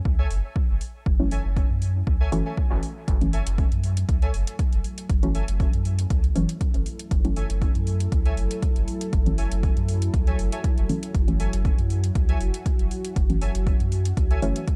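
Dry, dark production frames this cavernous, hypnotic dub techno excerpt in F# minor at 119 BPM, resting on a single F#m7 chord with a light swing. A punchy, overdriven kick sits up front beside metallic, overdriven hi-hats, while a clean sine sub bass, a warbling lo-fi synth keys riff with dub echo, and muted, detuned chord stabs entering at 1.2 seconds each pulse with sidechain pumping. A moody, full-bodied analog pad with a slow attack joins at 3.8 seconds, holding sustained chords wrapped in chorus.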